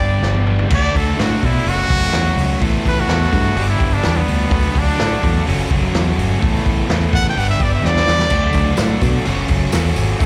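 A straight 4/4 groove drives this carefree, wistful indie rock excerpt, with a vintage acoustic drum kit coming in with a fill at 0.2 seconds and sitting up front with a punchy kick, a medium-tuned snare, dark cymbals and a rolled-off top. A fingered electric bass, direct and prominent, anchors the low end while two picked, overdriven electric guitars play riffs: one crunchy with slapback echo, the other biting, tucked in the background and treated with subtle chorus and slapback echo. Over them a brilliant trumpet takes the solo in a pop style, with light vibrato and scooped notes, colored by slapback echo and digital delay, and it carries the melody until 8.8 seconds. A jingly, bright tambourine, close and dry in the background, joins at 8.3 seconds. The chords cycle through G, D, F#m, Asus2 and G6, and the whole band is heard as a live gig through the venue's PA with a touch of club reverb.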